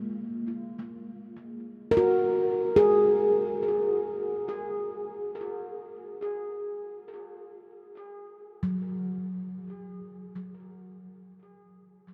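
A huge, wet reverb with a seven-second decay surrounds this short recording, placing it in a vast, echoing space. It is an ambient piece in free time, with a luminous, serene mood, cut from a longer work and lasting just over 12 seconds. A solo handpan plays throughout, sitting up front in the mix, its nitrided steel ringing with a mellow, airy tone under soft fingertips. A tape echo on the handpan adds repeats that drift into the long reverberant tail. The playing stays within a range from F#3 to A#4 over a single F#maj9 harmony, giving the passage a meditative, suspended quality.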